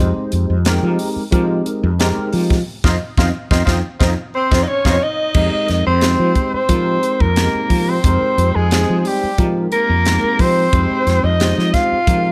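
A lightly reverberant sound frames this driving, slick electric jazz fusion excerpt in F minor, moving at 89 BPM in a straight 4/4 over a single Fm11 chord. A bell-like tine electric piano, bright and clean with an ensemble chorus, carries the accompaniment from the first moment, alongside a mellow fretless electric bass whose dark, round tone sits up front. A crisp, polished acoustic drum kit, airy, with a high-tuned snare, punchy kick, hi-hat and crash cymbal, joins at 0.3 seconds, and the band hits an accent while the drums play a fill leading into the second section. At 4.3 seconds a growling soprano saxophone takes the melody with a raspy, gritty, vintage edge, vibrato and scooped notes, while a clear, soft-attacked tenor saxophone enters just after to play a close-miked second line beneath it. Both horns carry on to the end of the cut at 12.3 seconds, the soprano standing out at the front of the mix.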